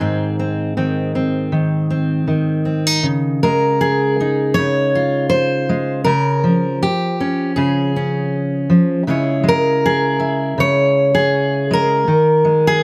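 Folk fingerstyle on a solo steel-string acoustic guitar, this short excerpt moves at an unhurried 80 BPM in a straight 4/4 and carries a warm, nostalgic mood. The fingerpicked dreadnought sits up front with a full-bodied tone, ranging from Ab2 up to Db5 across its 12.8 seconds. It opens on an Ab chord before shifting at 3.0 seconds into a new passage that moves through Dbadd9, Bbm7/Db and Dbm. It reaches an Ebsus4 shortly before the cut ends. Light reverb lends the lone guitar a gentle sense of space.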